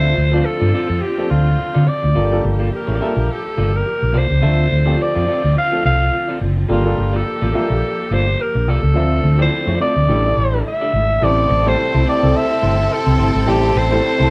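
Swung 16ths at 106 BPM drive this glamorous, danceable disco excerpt in D minor, where a round, punchy fingered bass sits up front beside a growling, raspy alto saxophone melody. A clean semi-hollow guitar with spring reverb and a clear string section holding lush sustained chords sit in the background of a small live room, alongside an intimate baby grand piano with audible action noise, before a smooth violin section adds a second line at 11.2 seconds.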